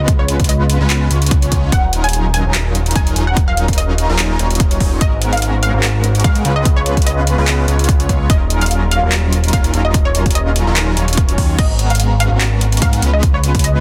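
Lush and dreamy, this future bass excerpt moves at 146 BPM in a half-time 4/4 feel with a light swing on the sixteenths, set in Eb minor and tuned slightly sharp to A4 = 444 Hz. A detuned unison pluck carries the melody in a high register, its punchy filter-plucked attack decaying under ensemble chorus and dub echo. Beneath it, a big, bold polysynth plays a nasal, detuned sawtooth riff with a moving notch, dressed in subtle chorus and digital delay. A fat, thick analog bass sits up front, mellow yet saturated through tube warmth, and every synth part pumps against the sidechain. The overdriven electronic kick lands punchy and forward, while an overdriven pop kit adds crash cymbal, handclaps and metallic hats, both kits carrying the character of a small room. Chords cycle through Db7, Ebm9 and Abm11 across the 13.8 seconds, and the dry, dense, heavily limited master keeps the whole sound close and loud.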